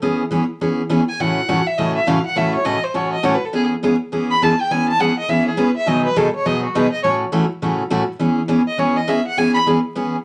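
A bright, full-bodied picked steel-string acoustic guitar with audible finger squeak opens this cheerful, down-home country excerpt at a brisk, swung 206 BPM in E major, moving through E6, A6 and B6 chords before a clear, smooth bowed fiddle with light vibrato enters at 1.1 seconds to carry the melody up front, all set in moderate studio reverb along with a layer of vinyl crackle.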